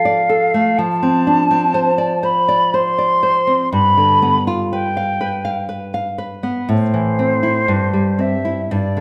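Bathed in a moderate recital-hall reverb, this passage cut from a longer romantic duo feels solemn and elegiac: an airy concert flute with vibrato carries a tongued, expressive melody up front yet with a distant quality, while a warm, fingerpicked nylon-string guitar in classical style supplies the accompaniment in a rubato three-four, moving from Dm/F through G7 at 3.7 seconds to Am and C/G.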